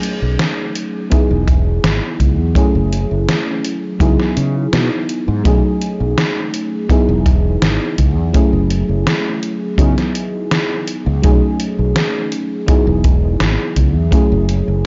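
Woozy and dreamy, this vaporwave excerpt drifts at 83 BPM in E major, with a mellow FM electric piano, round and warbling under lush chorus and analog delay, cycling through B13, Emaj7, F#m9 and C#m11 over a bright, punchy fretless electric bass with analog chorus, a detuned 8-bit digital drum machine whose hi-hat and snare carry gated reverb, and a boomy acoustic kick drum entering at 1.1 seconds, all set in a small room with a dark, muffled top end.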